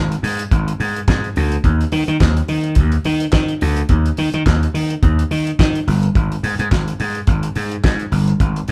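Disco at 106 BPM in 4/4 with a light swing on the sixteenths, this danceable, celebratory excerpt pairs a gritty, growly slap bass, overdriven and punchy, with a damped 70s drum kit of kick, snare, hi-hat and handclaps that enters at 0.1 seconds. The kit sounds dry and dark, with a fat snare, tight kick and rolled-off top, while the bass cuts through brightly; both sit up front. The band plays live in one large studio with moderate reverb, and the tuning sits slightly below standard at A4 = 439 Hz.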